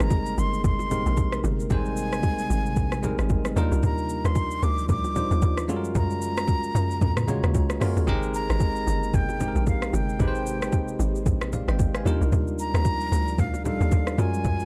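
Amapiano at 113 BPM in Ab lydian, warm and relaxed, with a swung 16th-note feel and lush major-ninth harmony moving between Abmaj9, Ebmaj9 and Gbmaj9. A tight, punchy log drum bass sits up front over a smooth electronic R&B kit of soft kick, metallic hats, rim click, shaker and toms, joined by very quiet, close and dry bongos and congas played with soft hands. A clean, bell-like tine electric piano and an ethereal, detuned pad with ensemble chorus support a breathy, close-miked concert flute melody carrying vibrato and tape echo, all set in a dark, fairly dry mix across the 14.7-second excerpt.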